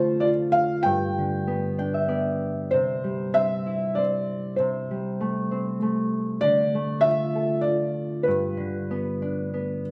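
Innocent and gentle, this children's lullaby sways in an unhurried three-beat time, a short passage cut from a longer piece. A felt-muted upright piano carries the melody throughout, its tone soft, mellow and intimate, with a boxy, thin-felt character and the faint clatter of its action audible up close. Beneath it, a concert harp supplies the accompaniment, its thumb-plucked strings sounding bright and ringing, and it adds a brief fill between 1.5 and 2.7 seconds. The harmony moves through Dm, G, C and Am7/C before returning to Dm and G, and the tuning sits slightly below standard pitch at A4 = 438 Hz. Both instruments sit close to the listener, framed by a moderate recital-hall reverb that lends the nursery tune a cosy sense of space.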